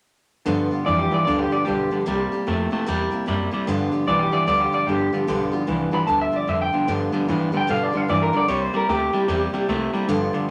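Retro and rollicking, this swung rock excerpt pairs a twangy, slightly broken-up electric guitar melody with a clean electric riff bathed in spring reverb, over a bright, full-bodied acoustic guitar and a woody, thumpy pizzicato upright bass, all moving between G7 and C7 in a moderate studio room.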